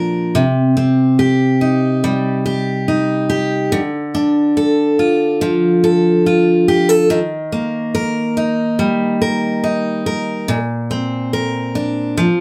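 A steady, straight 4/4 pulse at 71 BPM sets an unhurried pop feel in Bb major, tuned slightly high to A4 = 442 Hz. A picked steel-string acoustic guitar plays alone throughout these 12.4 seconds, its dreadnought tone bright and full-bodied and placed up front, ranging from Bb2 to Bb4. The chords move from Cm through Dm and Eb before settling on Bbadd9 at 10.5 seconds, giving the passage a heartfelt, tender character. Moderate studio reverb lends a sense of a live room around the instrument. This short cut is taken from a longer piece.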